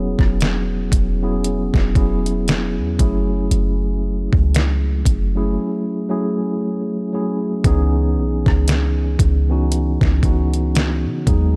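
Contemporary R&B in C# minor, this late-night, longing excerpt moves at a slow 58 BPM with a swung sixteenth-note feel, its chords shifting from E6 to F#m7 at 3.0 seconds and to C#m7 at 7.6 seconds, with a break between 5.6 and 7.6 seconds. A mellow tine electric piano sits up front, clean and heard as if through built-in speakers, while a deep, boomy 808-style bass with a sine tone, a fast attack and decaying notes anchors the low end. A detuned 8-bit drum machine with a thumpy kick, medium-tuned snare, rim click and hi-hat adds overdriven, small-room grit, all within a dark, dry production.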